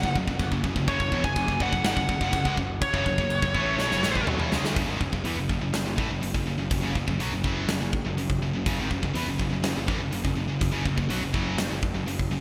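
Heavy metal at 123 BPM in F# minor, dark and aggressive, with a distorted high-gain lead guitar carrying a delayed melody until 4.2 seconds over background riffs from scooped high-gain and tight distorted guitars, a very quiet double-tracked thick fuzz guitar, a growly overdriven picked electric bass and an up-front big rock drum kit with gated reverb, bright cymbals and a china, whose fill at 3.8 seconds leads into a section on F#5 at 4.8 seconds, all within a lush hall reverb and 1980s-style digital production.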